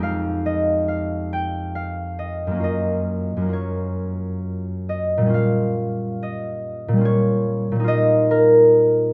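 A bright, ringing concert harp, thumb-plucked and up front, plays alone across this nine-second classical fragment cut from a longer piece, ranging from F2 to G5 in Bb dorian with the tuning set at A4 = 439 Hz. The mood is gentle and mysterious, moving in a rubato 3/4 at roughly 66-73 BPM through Fm9, Gbmaj7, Bbm6 and Ebadd9/Bb, the last chord arriving at 7.9 seconds. Close, detailed microphones and light reverb catch every plucked note.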